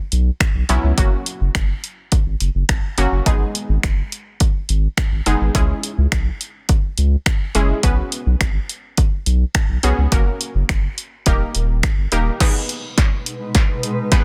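Bittersweet and energetic, this 105 BPM dance-pop cut in G# minor pairs a punchy analog drum machine, its snare softly clipped, with a thick, saturated sine sub bass and a bright, detuned sawtooth unison pluck that both pump with sidechain compression, until a drum fill builds from 12.4 s and a blurred, cloudy granular pad with its own reverb eases in at 13.2 s over a dense, heavily limited, dry master.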